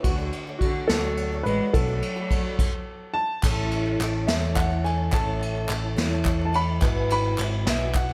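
A slow, straight 6/8 lilt at 71 BPM, carried by a punchy, roomy brush drum kit with dark cymbals and a round, amped electric bass, drives this anthemic, nostalgic indie folk excerpt in A major, which moves through Dmaj7, Bm7, A and Eadd9/G#. A woody, dark upright piano carries the melody over a shimmering, octave-doubled twelve-string acoustic guitar and a soft, flute-like tonewheel organ turning on a slow rotary speaker in the background, while a clear, focused bowed cello adds a distant second line until 3.1 seconds. After a stop from 2.6 seconds, the arrangement builds as hollow group handclaps join at 3.4 seconds, all within a light reverb.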